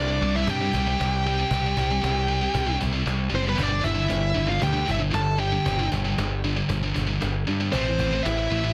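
Cut from a longer piece, this epic, aggressive heavy metal passage at 116 BPM opens with two warm, high-gain lead guitars carrying a melody and a lower second line through distortion and tape echo, over an up-front, bright, double-tracked distorted riff guitar and a growling, overdriven picked bass moving through C5, G5 and Am, while a woody, distant cajon in a large room enters at 0.5 s and drops its kick and snare at 3.3 s beneath a dense, heavily limited modern master with digital ambience.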